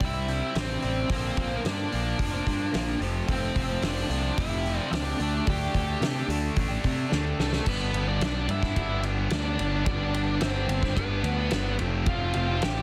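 A dense, heavily limited modern master set in a small room gives this restless, cathartic slice of quiet-loud alternative rock a packed, pressing sound, cut from a longer piece and moving at 110 BPM in a straight 4/4. A round, fuzz-laden picked bass sits up front beneath a tight, double-tracked distorted guitar riff, while a biting, overdriven lead guitar carries the melody from A3 to G5. The drum kit sounds distant and roomy, with dark cymbals, a fat snare and a tight kick under a rolled-off top. In the background, a clean, compressed twelve-string electric guitar shimmers through analog chorus with bright arpeggios over chords like Cadd9, Bbadd9, Fadd9 and Dsus4, stopping at 7.7 s. A drum fill from 7.1 s leads into a new section where the music settles into G mixolydian, moving from G to F as the remaining parts push on to the cut at 12.8 s.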